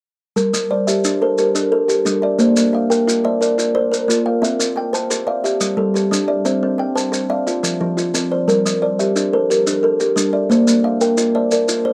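An up-front kalimba with a woody, ringing fingertip pluck spins mellow arpeggios from F3 to G5, joined from 0.5 seconds by a second kalimba whose short thumbnail plucks sound hollow and band-limited, together forming a trance-like, hypnotic mbira-style interlocking cycle in the southern African traditional vein. Grainy, vintage maracas keep percussion beneath them at 118 BPM in a straight 12/8, in G dorian, over chords moving through Gm, Bb, C and F5. The sound is dry and close, like a 1970s studio recording with moderate, short booth ambience, and the passage is cut from a longer piece.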